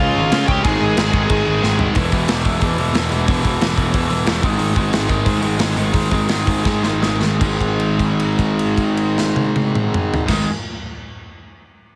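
A big, up-front rock drum kit drives this angry, urgent punk rock excerpt, its punchy kick, medium-tuned snare, bright cymbals, hi-hat and toms ringing in a large room, with fills breaking up the pace. Played in G# minor at 154-184 BPM in straight 4/4, and tuned slightly sharp to A4 = 443 Hz, the cut opens on a brief, dark, smooth overdriven lead guitar melody. That melody is heard only in the first 1.8 seconds. Beneath it, a semi-hollow guitar grinds out the main riff with a hollow-body bite. Two tight, distorted guitars also play riffs: one sits in the background, while a very quiet double-tracked part drops out after the opening. A growly, fuzz-laden picked bass anchors the low end over chords moving from C# to G#5 and E5. The tempo slows from 4.6 to 7.4 seconds, and the closing stretch rests on a long held note, all under light reverb and a heavily compressed, radio-like sound.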